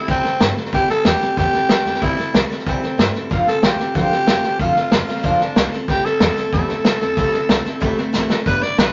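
A raspy, growling tenor saxophone leads up front in this rollicking, retro rockabilly excerpt at 186 BPM in C major, its close-miked, gritty tone carrying vibrato over chords that move from C6 to F6 and back. A bright, full-bodied picked steel-string acoustic guitar supplies accompaniment, while a woody, thumpy pizzicato upright bass sits in the background and a punchy vintage drum kit with a medium-tuned snare and rolled-off top drives from the front, playing a fill at 8.1 s. A moderate club ambience surrounds the band.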